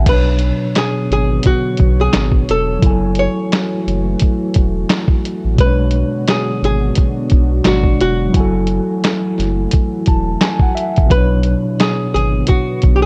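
Nostalgic and reflective, this short lo-fi hip hop excerpt at 87 BPM in B dorian sets a filtered, clean electric piano and a soft, round dub sub bass under an up-front, hollow-bodied archtop guitar melody with analog delay, a moody, detuned analog pad drifting in the background from 1.0 seconds, and a muffled, pitched-down sampler-style drum kit with a thumpy kick, handclaps and 12-bit grit, all swung on the sixteenths over alternating Bm69 and F#m9 chords in light reverb with cassette tape character.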